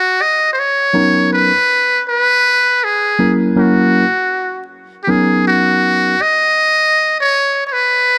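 A trumpet with a metal mute, buzzy and thin with light vibrato and a soft attack, carries an up-front jazz-style melody through this smooth, relaxed hip hop excerpt, while a worn, slightly out-of-tune tine electric piano with phaser plays mellow accompaniment from 0.9 to 6.1 seconds over Bmaj9 and F#7 chords, and the mix sits in a small room with light reverb, dark production and vinyl crackle.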